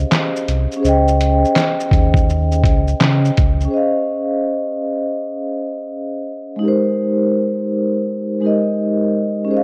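Lo-fi hip hop cut from a longer piece, cosy and dreamy at 83 BPM with a swung 4/4 feel in Db lydian, where a muffled, compressed, pitched-down sampler-style trip hop kit with a thumpy kick, medium-tuned snare, handclaps, hi-hat and shaker joins a deep, sine-toned sub bass doubled at the octave until both stop at 3.7 s, leaving a close-miked, metallic, ringing vibraphone with slow motor vibrato to carry Dbmaj9 alone until it moves to Abmaj9 at 6.6 s, all bathed in a wet spring reverb and the worn, warbly pitch drift of old cassette tape.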